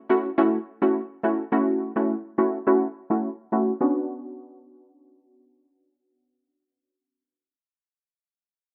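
Sultry and tough, this short dancehall clip is carried by a single punchy synth chord stab, built from detuned sawtooth and square waves with a fast-attack, decaying pluck, thickened by chorus and sitting up front. A filter sweep shapes the stab through its first 3.8 seconds on an A6 chord before the harmony shifts to Bmadd9. The rough home-demo mix carries a light reverb.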